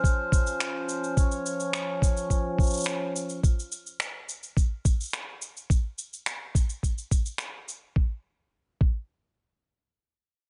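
A muffled, thumpy electronic kick drum, pitched down and compressed in a sampler style, sits up front in this delicate folktronica excerpt and plays until 9.0 s. In the opening moments a reedy, breathing hand-pumped harmonium holds a full, dry, close-miked Dbmaj7 chord through a low-pass filter sweep before stopping at 3.4 s, while natural acoustic cabasa and finger snaps with a brushed feel carry on to 7.8 s. A small room ambience and a softened top end give the piece a warm sound.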